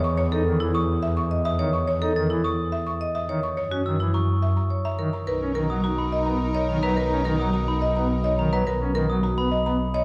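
Classical minimalist pattern music at 106 BPM in 3/4, this short excerpt has a propulsive, bright mood and settles into B major at 5.3 seconds, where it moves into a new section. A buzzing, woody marimba with medium mallets carries the melody, while a second marimba with medium hard mallets on rosewood bars plays bright, percussive arpeggios. High above them, a bell-like glockenspiel with soft plastic mallets adds ringing, close-miked arpeggios, and a pipe organ on foundation stops fills the middle with thick, romantic accompaniment. Underneath, a single bowed double bass sits up front, expressive with vibrato and portamento. From 5.3 seconds a lush studio string section holds sustained chords and a warm clarinet with a soft attack adds a smooth second line in the background. The whole is bathed in a wet, large studio reverb, giving the production a dark, warm sound.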